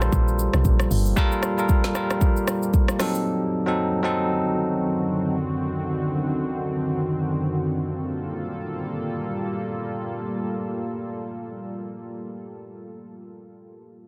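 A swung sixteenth-note amapiano groove drives this hypnotic, soulful fragment. A layered electronic deep house kit of deep kick, woody soft-clipped snare, smooth hi-hat, rim click and shaker plays until 3.2 seconds, while a round, percussive log drum bass with a dark FM tone sounds only briefly at the start. A clean, bell-like tine electric piano accompanies the move from Gm9 to D7b9/F# until 5.4 seconds, leaving a moody, detuned sawtooth pad with chorus, built-in reverb and sidechain pumping to sustain alone until 12.2 seconds, all in a dry, dense, heavily limited modern master.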